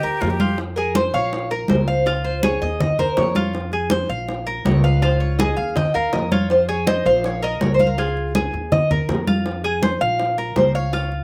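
Latin Cuban son with a guajira flavour at 162 BPM in F minor, this nostalgic fragment opens with a breathy, bright flute heard for only 0.6 seconds with slapback echo over the accompaniment. A warm, up-front tres then takes a melodic solo from 0.8 seconds over a second, mellow tres picking arpeggios, a woody, growly pizzicato upright bass, thick-skinned congas and round, distant bongos carrying their own slapback echo, as the chords cycle through Fm, Bbm, Db and Eb5 in a dry outdoor sound.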